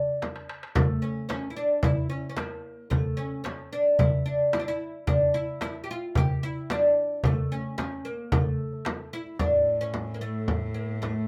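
A bright, woody oud, plucked with a plectrum on its fretless double strings, opens this hypnotic, soulful Arabic maqam ensemble piece in A hijaz at 111 BPM, with a drum fill at 0.2 seconds as a crisp metal-shelled darbuka and a deep, large frame drum, played up front with hard hands, join it. The darbuka drops out at 9.3 seconds, and at 9.4 seconds a single bowed cello enters, holding an earthy, biting drone on A with light vibrato beneath the oud. Moderate small-room reverb surrounds the ensemble in this short cut from a longer piece.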